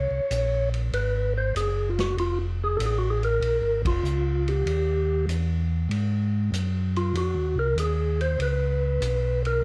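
A soft, flute-like tonewheel organ carries the melody with percussive third-harmonic attacks, audible key click and a fast rotary speaker bathed in plate reverb, while a second, round and mellow organ holds down the bass through a slow rotary speaker. This bluesy, soulful soul jazz organ trio swings easily in 4/4, with a vintage acoustic drum kit entering at 0.3 s on hi-hat, ride, snare and a punchy kick under dusky cymbals and a rolled-off top. After a band accent at 3.7 s, the organ takes a solo from 5.9 s in this dark, lightly reverberant excerpt from a longer piece.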